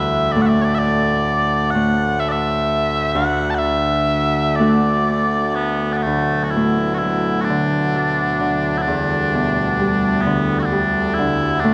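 Bathed in a wet church reverb, this nostalgic, wistful Celtic folk slow air in D major drifts through a rubato 6/8 at 43 BPM: mellow small bagpipes carry a sweet, continuous melody with vibrato up front over ringing, fingerpicked Celtic harp, and a very quiet, reedy, breathing pedal harmonium adds sustained chords from 6.1 seconds.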